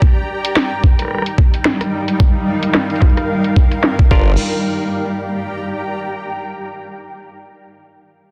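Dense, heavily limited and lightly reverberant, this playful, gritty glitch hop fragment with swung 16ths opens on a thumpy, compressed electronic kick and an up-front cloudy, detuned granular pad pumping over Ebmaj9/G, joined at 0.4 s by a cracking layered drum kit of snare, rim clicks, hi-hat and crash under a filter sweep. A saturated sawtooth-and-sine wobble bass with chorus and a mellow, stringy clav with vintage 12-bit sampler grit and digital delay then flash in on Gm7 at 4.1 s, just before the drums stop at 4.2 s. Once the bass fades at 4.4 s, the blurred pad carries on alone until 6.5 s.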